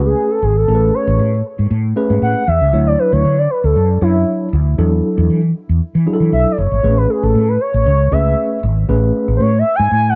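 A straight groove in 4/4 carries this smooth, feel-good slice of early-eighties boogie funk, cut from a longer piece. Up front, a round, dark fretless electric bass sits loudest in the mix, its amped tone thickened by a lush chorus. Beneath it, a mellow tine electric piano supplies clean accompaniment that sounds as if heard through its built-in speakers, dropping out at 9.5 seconds. Across the whole 10.2 seconds a soft synth lead takes the solo, a gliding blend of sawtooth and sine voices, detuned and sustained, with a gentle attack, vibrato, portamento and chorus. The harmony moves from Amaj9 to Dmaj9 and E9sus4 before settling back on Amaj9, framed by light digital reverb in a dusky, warm production.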